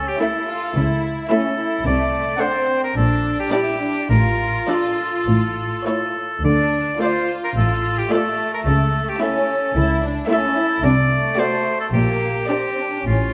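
In a rubato 4/4 at 101-112 BPM, this dramatic, restless, fast romantic orchestral passage in D minor, cut from a longer piece, sets an intense violin melody in the distant background against an up-front clear oboe and smooth, lush violins sharing a second line, with focused violas in accompaniment and rich cellos and soft-attack double basses carrying the bass, inside a moderate scoring-stage reverb as the harmony moves from A/C# through D7/C and Gm/Bb to Dm.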